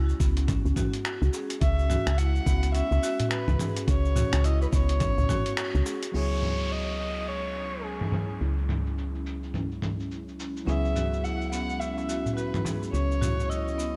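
Organic downtempo at 106 BPM in C# minor with a swung 16th-note feel, mystical and meditative, built on a very quiet ethereal pad, a round, woody FM bass holding C#2, delayed marimba arpeggios, and a dusty, overdriven sampler-style kit of cabasa, finger snaps, filtered hi-hats and toms alongside a thumpy electronic kick that stops at 5.4 seconds, with a very quiet clay-shelled darbuka beneath. An intimate kamancheh carries the bowed melody with light vibrato and portamento from 1.6 seconds, and at 6.1 seconds a bell-like, chorused electric piano with sidechain pumping and an electronic downlifter arrive as a filter sweep passes over the drums, all set in light digital ambience within a dark production cut from a longer piece.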